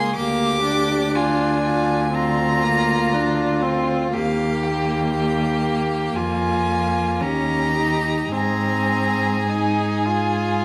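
A single bowed first violin carries the melody, its rich, focused tone and vibrato ranging between F5 and D6. This is a slow, romantic movement for string quartet, tender and lyrical, moving at 52 to 61 BPM in 4/4 with a rubato feel and tuned to A4 = 442 Hz. Beneath it, a second violin sounds clear yet distant on its inner line. A close viola fills out the accompaniment, and an up-front cello anchors the bass with a smooth top to its sound. The harmony passes from Bb7/D through Eb, Fmadd11 and Eb7 before reaching Ab at 8.3 seconds, all held in a moderate scoring-stage reverb in this brief cut from a longer piece.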